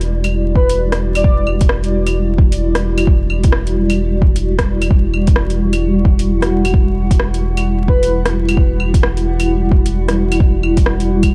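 Future garage at 131 BPM in E minor, wistful and ghostly, built on a single Em9 chord with a swung 16th-note feel, cut from a longer piece. A cloudy, granular pad holds sustained chords with built-in reverb and sidechain pumping alongside a round sine sub bass that also pumps, while a garage kit of metallic, overdriven hats, claves and rim clicks sits in a small room and a soft, tape-warm electronic kick joins at 0.6 s. A breathy, flute-like synth lead with chorus, vibrato and tape echo drifts in briefly from 0.6 s and again at 7.9 s, all over a bed of vinyl crackle and light reverb.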